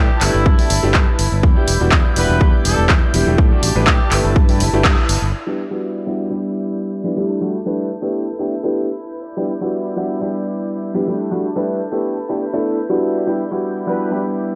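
Filtered disco house with a funky, groovy feel, where a clear, intimate baby grand piano with audible action noise carries phaser-tinted chords throughout, earthy bowed chamber strings with 12-bit sampler grit hold sustained harmony, a bright trumpet section sits in the background with tape echo, and a punchy fingered bass, overdriven house claps and hi-hats, and an up-front electronic kick drive the first 5.3 seconds before dropping out, while the piano, strings, trumpets and bass pump under a low-pass filter on a gritty cassette-toned recording.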